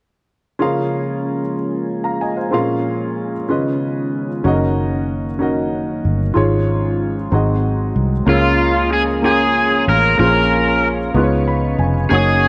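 Moderate echo-chamber reverb surrounds this hopeful, reverent gospel excerpt in Db major, moving slowly at 63 BPM in a straight 6/8. A clear, worn concert grand piano with deep bass carries the accompaniment from 0.6 s, over mellow, flute-like tonewheel organ chords with key click spun through a fast rotary speaker in the background and a very quiet, dark French horn section. A round, foam-muted fingered electric bass enters up front at 4.4 s, and at 8.3 s an overdriven slide guitar takes the melody with a bright edge alongside a tight, vintage jazz-style horn section with light vibrato, while the piano adds a fill near the close.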